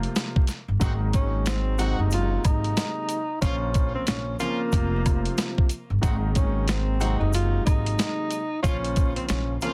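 Vinyl crackle and light reverb sit over a dense, heavily limited master in this reflective, moody boom-bap hip-hop passage, cut from a longer piece and moving at 92 BPM in 4/4 with a 60% swing on the sixteenths. A compressed, pitched-down sampler-style kit sits up front, its thumpy kick and high-tuned snare gritty beside the hi-hat, while a woody, growly pizzicato upright bass on steel strings holds the low end just as close. A dark baby grand piano with long sustain comps through a mellow cassette-tape haze, cycling through Fsus4, Ab7 and Bbmadd9. Over it, a breathy tenor saxophone carries the melody as a jazz-style solo, whispered and intimate, with subtone, vibrato, soft attacks, scooped notes and a smooth top, trailed by delay and filtered at both ends. From 0.8 seconds a warm, present jazz horn section adds ensemble stabs with its own delay, and from 0.2 seconds an acoustic egg shaker, woodblock and group handclap tick along close and dry in the background.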